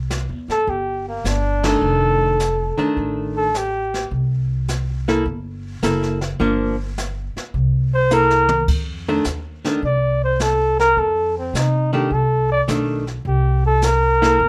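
A swung 4/4 groove is carried by a woody, thumpy pizzicato upright bass on gut strings and a boomy brushed drum kit with dark, smooth cymbals, giving this cut of small-group swing and bop a sophisticated, warm mood. Up front, a warm, vintage-toned flugelhorn sings the melody with vibrato, steps aside, then returns at 7.9 seconds around a drum fill. A clean, compressed hollow-body archtop guitar, picked and miked through an amp, enters just after a band accent at 1.5 seconds to play accompaniment, all within a moderate club reverb.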